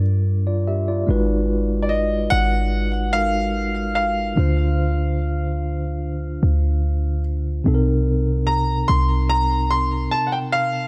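A mellow tine electric piano and a deep, boomy, clean 808-style bass open this 73 BPM R&B excerpt in 4/4, tuned to A4 = 435 Hz and moving through Gm7, Abm7, Dm7 and Cm7 with a longing, late-night mood, before an intimate concert grand piano with audible action noise, long sustain and a digital delay enters at 1.8 seconds to carry the high melody, the whole mix sitting in a light studio reverb.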